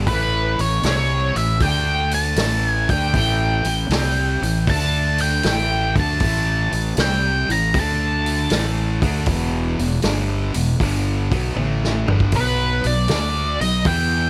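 A loping, swung 4/4 shuffle drives this short, raunchy and gritty cut of blues rock power-trio playing with a southern rock edge, taken from a longer piece. A thick, bright, double-tracked fuzz guitar picks a distorted riff over power chords that move among A5, D5 and E5 before landing on B5 near the end. Underneath, a fingered electric bass sits up front with a growly, overdriven fuzz tone, while a vintage acoustic kit in a studio room supplies hi-hat, snare, toms and a punchy kick, its top end rolled off and its mid-forward sound keeping the groove earthy. Over it all, an octave-fuzz lead guitar plays a dark, picked melody, coloured by wah and a slapback echo. A drum fill from 11.6 to 12.3 seconds marks the turn to the final chord, and the dry sound, with little reverb, keeps every part raw and immediate.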